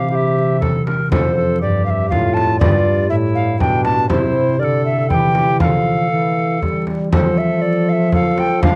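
Courtly and festive, this short excerpt from a longer piece is a Renaissance-style consort dance in F major, moving at 120 BPM in a straight 3/4. Up front, a mellow tenor recorder carries the melody with an airy, tongued tone and a touch of chiff, while a second tenor recorder sits distant beneath it, pure and soft in attack. A concert harp supplies thumb-plucked, ringing accompaniment, and a clear trombone holds the bass with classical-style vibrato. A deep, large frame drum joins at 0.6 seconds, played with hard hands and heard from a distance, as if in a large room. The harmony moves from C through F and G7 back to C and F, the recording is close and detailed under light reverb, and a faint vinyl crackle lends it an aged surface.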